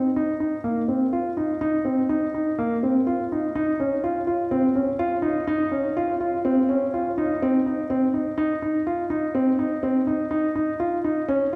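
A dark, mellow concert grand piano plays alone and up front for the full 11.6 seconds of this electronica passage, staying between Bb3 and F4 with a deep bass and long sustain. Its luminous, hopeful feel builds until a drop arrives at 7.4 seconds. A wet recital-hall reverb surrounds the piano in this section cut from a longer piece.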